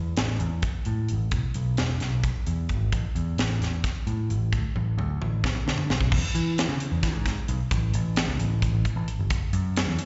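A dark, round picked electric bass opens this bright, intricate slice of math rock and midwest emo at 0.0 s, its amped tone punchy and up front as it ranges from deep lows into the middle register. A crisp fusion drum kit joins almost at once, its airy, polished sound built on a high-tuned snare and a tight kick, with hi-hat, toms and crash cymbal, and a slapback echo trails the kit. The music moves in a straight 7/8, giving the passage an angular, restless drive. A drum fill runs from 4.8 s into a new section that begins at 6.1 s and carries the passage to its close. The performance is heard as a live gig through the venue's sound system, with recital hall reverb and a dulled top end that softens the edges of the mix.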